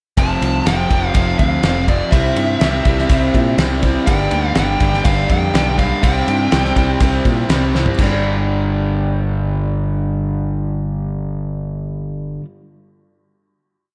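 A straight 4/4 pulse at 123 BPM drives this gritty, swaggering classic rock piece in G dorian, with a cloth-damped, thuddy drum kit up front laying down a big groove of fat snare and tight kick until a fill at 7.7 s, while a picked electric bass pushes eighth notes beneath two crunchy overdriven guitars hammering bright eighth-note power chords. A dark, smooth lead guitar with overdrive and slapback echo states hook phrases over the chords F, C, Gm and C until 7.5 s, as a boxy parlour acoustic guitar strums open chord shapes in the background. The pre-chorus lands on a final Gm chord at 8.0 s, ringing out in a lush hall reverb with a big arena sound.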